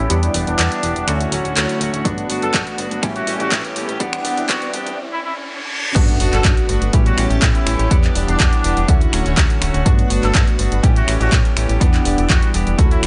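This cut from a filtered disco house track sits under a light reverb, with its top end rolled off and most of its parts pumping to the kick. It's joyful and feel-good in a straight four, opening on a build-up with a filter sweep that breaks into a drop at 6.0 seconds, where an impact hits. A snappy, metallic FM bass sits underneath a funky polysynth comp with a chorused, phased pluck, while a clean, twangy electric guitar recorded direct plays a riff. A lush string machine holds sustained chords in the background, swirling with phaser and ensemble chorus. A tight trumpet section carries the melody with light vibrato. The tape-warm analog drum machine brings crash cymbal, finger snaps, handclaps and hi-hat from the start, joined at 2.1 seconds by a punchy kick placed up front, while a very quiet riser, reverse cymbal and sub drop fill the stretch from 2.7 to 7.9 seconds.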